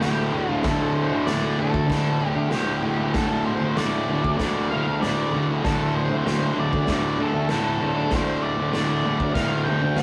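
From the first second, this gritty, raw garage rock clip opens with all three parts at once: a low, double-tracked fuzz guitar riff parked on a D5 chord, a dark octave-fuzz lead guitar carrying the melody up high, and a rough garage drum kit. The riff guitar is the loudest part, bright, compressed and pushed up front, its picked fuzz tone filling the bottom of the mix. The lead guitar sits further back, its distorted, picked line adding a shadowy edge above the riff. The drums play hi-hat, kick and snare in a straight 4/4, with a punchy kick, a medium-tuned snare and a saturated sound shaped by a stone room that pumps and a rolled-off top. A short, wet reverb and the rough rehearsal-room recording give this ten-second excerpt from a longer piece an unpolished immediacy.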